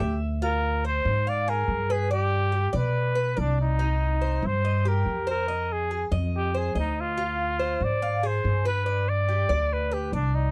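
From the opening moment, a breathy trumpet, a Cuban tres and an upright bass play together in this danceable Latin piece, moving at 142 BPM in a straight 4/4. The solo trumpet sits up front with the melody, its soft attack, gentle vibrato and whispered, intimate tone giving it a vintage, pop-style character. Beneath it, the acoustic tres picks bright arpeggios on its doubled strings, some of them octave-doubled, for a metallic shimmer. The pizzicato upright bass is also up front, its steel strings producing a woody, growly and thumpy low end with a dark weight. The harmony cycles through Dm7b5, G, Cm and Fm7, lending the warm mood a minor-key tinge. Cut from a longer piece, the passage has the dry, close feel of a 1970s-style studio recording with little reverb.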